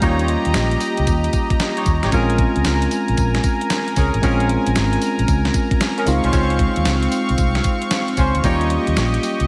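Slick and punchy, this new jack swing R&B excerpt moves at 114 BPM in Bb dorian with a 16th-note swing, cycling through Eb7, Bbm7 and Dbmaj7 under a lush hall reverb that gives it a big arena sound. A crisp, thumpy 8-bit drum machine with hi-hat, snare, kick and tambourine sits up front over a dark, round, foam-muted fingered electric bass, while a clean tine electric piano with slapback echo plays accompaniment. A brassy, detuned sawtooth pad with chorus and a filter sweep holds sustained chords above, and a mellow, tight horn section punctuates with stabs through digital delay and slapback echo until it drops out at 8.7 seconds.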